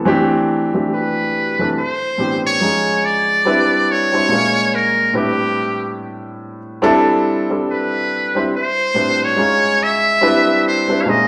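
Sultry and late-night, this short R&B excerpt drifts at 71 BPM in 4/4 with a lazy swing on the sixteenths. A baby grand piano opens the piece at 0.0 seconds, playing warm, polished accompaniment that sits present and up front across its range from A2 to Db5. At 0.9 seconds a trumpet with a metal mute enters carrying the melody, its tone brilliant, buzzy and thin, shaded with vibrato and delivered in a forceful, punchy jazz-solo style. Although placed up front, the trumpet also carries a distant, roomy quality as it moves between G4 and F5. The harmony circles through lush extended chords such as D9sus4, Am11, C#add9, Cmaj9 and Bbm7, and the two players sound as if performing live together in one room, wrapped in a wet, large studio reverb.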